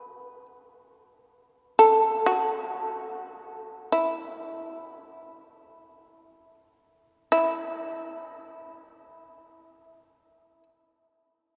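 A bright, buzzing solo shamisen, plucked with a plectrum and sitting up front, carries this calm, austere Japanese traditional chamber music in free time, slowing down between 1.7 and 7.3 seconds before a new section begins and falling silent at 10.6 seconds, its percussive, fretless tone bathed in a long cathedral reverb from a church or concert hall in this short passage cut from a longer piece.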